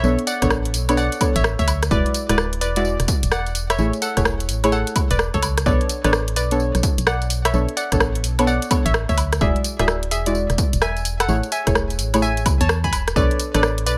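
Light reverb frames this late-night, skippy two-step UK garage excerpt at 128 BPM in B dorian, swung on the sixteenths and moving through Bm9, E9 and Amaj7. An up-front, tape-warm garage kit of hi-hat, rim click, tambourine and woodblock skips over a punchy analog kick that enters at 0.4 s, while a dark, organ-like FM bass with fast, decaying notes holds the low end. Soft, warbling vintage chord stabs with a filter sweep and chorus sit beneath a bouncy, detuned square-wave pluck melody treated with chorus and delay.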